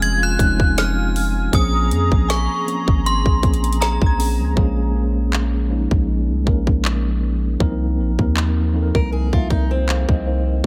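Contemporary R&B in Bb minor at 79 BPM with a gentle 16th-note swing, sensual and moody, set in an echo-heavy digital ambience. It is built on a trap kit with a hard-clipped kick, woody snare, metallic hats and handclaps, and a deep, dark sine 808 bass, both up front, beneath a mellow tine electric piano with tape echo that runs throughout. A chiming, inharmonic FM synth melody with ensemble chorus and tremolo and a smooth detuned sawtooth pad with sidechain pumping fill the opening seconds, joined at 2.3 s by a faint, woody FM mallet pluck, and a bright, boxy picked archtop guitar with audible finger squeak enters for arpeggios at 8.9 s.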